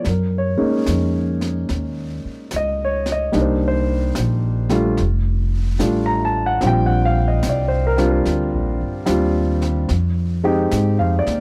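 A dark, mellow grand piano and a brushed drum kit open this romantic, intimate jazz ballad in Bb major at a slow 73 BPM with a gentle swing, joined at 0.1 seconds by a woody, pizzicato upright bass sitting up front beside the piano. The drums stay softer in the background, their high-tuned snare and hi-hat whispering under brushes, while the harmony moves from Gb69 through Cm9, F69 and Bb6 before reaching Fm7 at 9.9 seconds. The dry, close sound of a small 1970s-style studio room keeps the trio feeling near and personal throughout this short cut from a longer piece.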